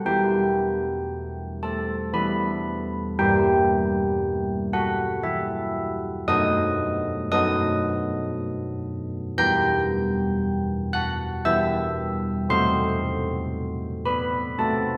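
Wintry and solemn, this classical tune for church bells moves slowly at 58 BPM in 3/4, with solo carillon bells sounding bronze and mellow, their dark, soft ringing from a padded clapper and minor-third overtone set up front in a wet recital hall reverb, settling into E minor from 6.3 s through chords such as Em, B7/F# and F#dim/A across this 15-second cut from a longer piece.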